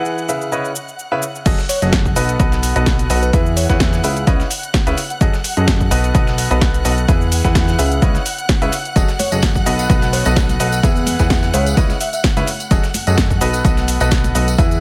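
A clear, present grand piano riff opens this energetic, bittersweet piano house excerpt at 128 BPM, carried by lush, bowed violin-section chords with vibrato and a smooth top, while a punchy, overdriven analog drum machine brings in snare, hi-hat, cabasa and crash cymbal. The piano, strings and bass pump with sidechain compression, and the piano trails a dub echo, all over a lightly swung 16th-note feel and a cycling E, C#m9, F#m69, B7 progression. The drop lands at 1.5 seconds with an overdriven electronic kick up front, a plucky, funky analog bass with a fast attack and mellow decay, and a gritty, compressed sampler-style kit tucked behind with filtered hats and snare. A sparkling, bell-like FM electric piano drifts in the background in two short melodic passages, colored by chorus and dub echo. At 9.0 seconds, tambourine and congas played with hard hands join from a live room in the back of the mix, and the dry sound keeps every element crisp.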